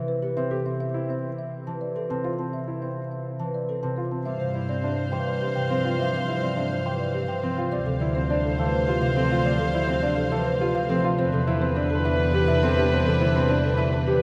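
Classical minimalist pattern music in a hypnotic, bright G mixolydian at 104 BPM in 3/4, this excerpt opens with a woody soft-mallet marimba melody over ringing harp accompaniment, joined at 0.4 s by clear grand piano arpeggios, before a distant soprano saxophone with light vibrato adds a second line at 4.3 s alongside lush sustained string chords and a smooth bowed double bass section, all set within a vast, echoing space as the harmony moves from Cmaj7 through G7sus4 and Dm9 to Cmaj9/E.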